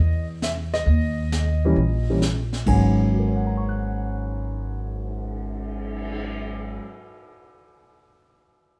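A jazz piano trio excerpt in G# minor, moving at 134 BPM in 4/4 with a swung eighth-note feel and a moody, smoky atmosphere. A dark, mellow grand piano carries the melody up front across a broad register from G#2 to F#6, its long sustain ringing out until 7.8 seconds. Beneath it, a pizzicato upright bass with a woody, growly tone and steel strings sits close in the mix, holding down the low end until 6.8 seconds. Entering at 0.4 seconds, a brushed drum kit adds an airy, polished texture with dark cymbals, a high-tuned snare, a boomy kick, hi-hat, crash and a cymbal swell. The harmony opens unaccompanied by chords, passes through a D#5 and settles onto a G#m11 as the second section begins, all captured as a band playing live together in one room with moderate studio reverb.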